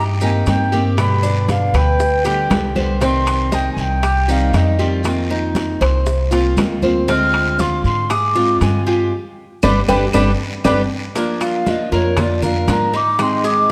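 Sultry and warm, this excerpt of Cuban son and guajira moves at 118 BPM in a straight 4/4 in C minor, cut from a longer piece. An airy, mellow silver concert flute carries the melody from a distant place in the hall, its unsteady straight tone marked by a crisp attack and breathy chiff, and it takes a solo from 11.2 seconds over chords moving to Bb and Ab. Up front, a woody, thumpy upright bass with gut strings is plucked low, while a metallic Cuban tres with double strings picks arpeggios and a bright, fingerpicked nylon-string guitar with fresh strings and audible finger squeak fills in the accompaniment. The percussion sits in the background: thin-skinned congas, ringing metal-shell timbales, a raspy guiro, grainy maracas and very quiet round, low-tuned bongos, while dry, woody claves enter at 3.3 seconds. The band hits accents from 9.1 seconds, capped by a drum fill at 10.4 seconds, and a moderate recital hall reverb gives the whole a dark production.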